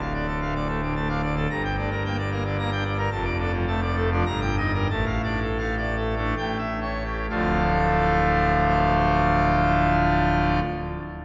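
Dramatic and stormy, this short passage cut from a longer classical organ toccata in D minor sets a pipe organ alone on full organ, its majestic, brilliant mixtures and romantic voicing sitting up front and sounding from 0.0 to 10.6 seconds across a span from D1 to Bb5. In 3/4 with a straight feel and tuned to A4 = 444 Hz, the tempo moves between 61 and 112 BPM, slowing from 2.3 to 7.3 seconds as the harmony travels through Gm, Eb/G and A7 before arriving on Dm at 7.3 seconds. A wet church reverb with a 3.2-second decay surrounds the organ in a vast, resonant space.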